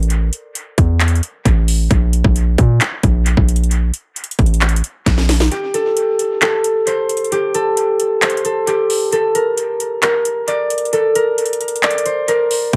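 Brooding and dark, this half-time trap excerpt at 133 BPM in A phrygian opens on a punchy, sine-heavy 808 bass with a noise layer and a trap kit of hard-clipped kick, sharp snare, metallic hats and handclaps, overdriven and drenched in dub echo, until a drum fill at 5.1 seconds hands over at 5.5 seconds to a ringing, fingerpicked concert harp, low-pass filtered and echoing, while the kick drops out and the bass falls silent until a brief return at 12.7 seconds, all within a lightly reverberant, echo-heavy mix.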